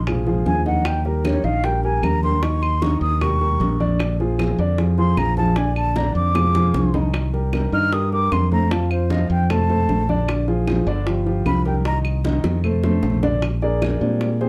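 A dark, lightly reverberant production frames this sunny, danceable Afro-Cuban jazz passage at 153 BPM, where a breathy, mellow concert flute with vibrato and a crisp attack carries an expressive solo melody until 12.0 seconds over a growly, bright fingered electric bass up front, an intimate grand piano with audible action noise, tight high-tuned bongos, ringing distant congas and woody, band-limited claves in the background, before the piano takes a brief solo from 13.4 seconds.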